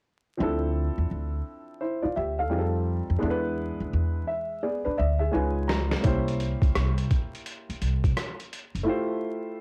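Nocturnal and smoky, this swung jazz-hop excerpt sets a dark, mellow grand piano with audible action noise and cassette-tape colour over a woody pizzicato upright bass, with the piano adding a fill from 3.9 seconds before a gritty, compressed, pitched-down boom bap sampler kit with a thumpy kick enters at 5.7 seconds, all within a moderate booth ambience tinged with vinyl crackle.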